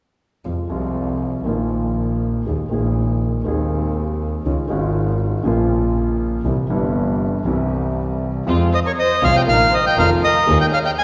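Tense and dramatic, this rubato tango in F minor moves at 120 BPM in 4/4, tuned slightly low, and is cut from a longer piece. A warm, intimate concert grand piano carries the accompaniment from 0.4 seconds, its deep bass and audible action noise sitting up front beside a bowed double bass played by one player, rich and earthy with a nasal, boxy edge. The harmony travels from F minor through suspended and added-ninth colours to a C chord before returning to F minor. At 8.5 seconds a very quiet, dark chamber string section adds bowed stabs with vibrato and portamento, and moments later a reedy, close-miked bandoneon takes the melody, dry and full at the front of the mix. Beneath it a lush studio violin section plays a second line, expressive with vibrato and sliding portamento. The whole piece sits in a church or concert hall with a long, wet reverb.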